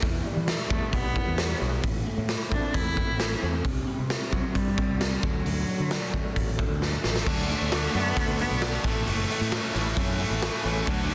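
This dark, angsty quiet-loud alternative rock excerpt at 133 BPM opens with a twangy, slightly broken-up electric guitar playing arpeggios with tremolo in the background. Beneath it sit a punchy, overdriven fingered bass and a raw garage drum kit. The drums sit up front with crash, hi-hat, a boomy kick and a medium-tuned snare, their sound saturated and gritty with a pumping stone-room character. At 0.7 seconds a focused, bowed solo cello enters with a rich, vibrato-laden melody treated with digital delay, moving over a progression that begins on E minor, A minor, C and D. A drum fill leads into a heavier passage at 7.3 seconds, where a bright overdriven guitar riff joins up front, and a thick, dark fuzz guitar adds a distorted riff in the background at 10.9 seconds as the clip closes. Light reverb and small room ambience surround the parts in a dense, heavily limited modern master.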